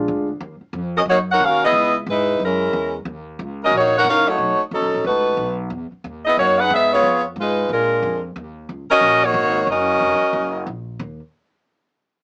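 A brisk swing at 181 BPM in 4/4 drives this Eb minor big band jazz clip, cut from a longer piece, with a pizzicato upright bass, woody and thumpy on gut strings, playing from the start and sitting low in the mix. At 1.0 seconds a clear, close-miked saxophone section enters up front, playing the brassy, swinging melody with vibrato through changes such as Ebm7, Gb9, Emaj7 and Bb7 until 10.6 seconds. The whole recording carries a modest club ambience and the warbling pitch drift of a worn old cassette heard through a small speaker.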